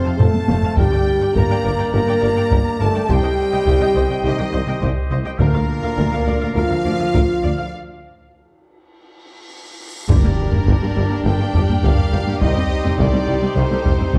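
Epic orchestral film score, dramatic and cut from a longer piece, in which a smooth violin section carries the melody over a focused second violin line, intense violas, lush, distant cellos and double basses and a very quiet tuba, while mellow French horns, trombones and soft-attack woodwinds hold sustained chords above saturated, heavy-stick taiko drums and sparse hard-mallet timpani, until a break at 7.7 s gives way to a huge cymbal swell from 9.4 s and an impact at 10.1 s, the whole set in a moderate scoring-stage reverb with a dark, warm production.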